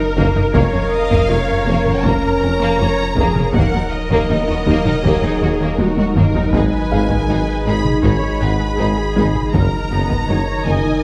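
A straight 4/4 pulse at 80 BPM drives this relentless, vast cinematic cue in Eb minor, a fragment of a longer hybrid orchestral and electronic score, where a background taiko ensemble struck with hard sticks has a vintage, band-limited tone and plays a fill from 5.8 to 6.5 seconds. Lush, distant bowed violins with vibrato carry the melody over a warm violin second line and rich violas, while mellow French horns, an ethereal, airy pad with tremolo and a very quiet nasal, detuned analog pluck playing arpeggios fill out the harmony, and a soft, boxy felt-muted upright piano adds texture. The low end pairs a deep, round sine sub bass with very quiet cellos, double basses and a tuba, all set in a moderate concert hall reverb with some lossy compression artefacts.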